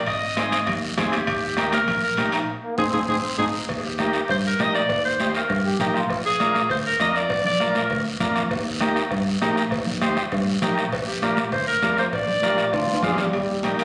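Captured on a phone in a room with moderate studio reverb and a faint mains hum, this joyful, sunny cumbia excerpt runs at 199 BPM in Eb major, with a bright, punchy clarinet up front carrying the jazz-style melody through plate reverb, while a buzzy, overdriven combo organ with heavy vibrato supplies the accompaniment. A clear, roomy trombone with scooped notes adds a second line from 2.6 seconds, just as the band hits an accent and shortly before the drums fill. Underneath, a direct fingered electric bass joins soft-handed, high-tuned congas, a raspy guiro, a distant bombo, and ringing timbales and cowbell sitting in the background.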